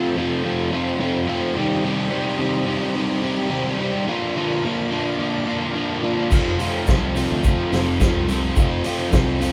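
Captured as a band playing live in one room with a moderate large studio reverb, this upbeat, jangly indie rock excerpt opens with a bright, double-tracked overdriven guitar riff up front over a lush string machine holding soft, sustained chords in the background through phaser and ensemble chorus. At 6.3 seconds, a growly picked electric bass, a vintage drum kit with a punchy kick, dark cymbals and a pumping room sound, and a grainy egg shaker enter together. Meanwhile, the harmony moves from F through Cm and Bb and back to F.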